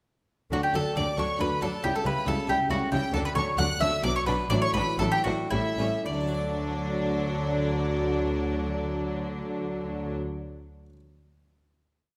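Lively and brilliant, this short baroque-style concerto movement in D major and 3/4 moves at 108-139 BPM through a ritornello that slows from 2.5 s to 6.1 s before a final chord held from 6.1 s. An up-front, round, picked mandolin doubles the tune that the lush symphonic violins sing with vibrato and portamento, while smooth chamber violins and background violas supply repeated notes and sustained chords, expressive cellos and a dark, soft-attacked double bass section carry the bass, and a dry, close-miked Italian harpsichord ripples beneath, all set in a wet recital-hall reverb.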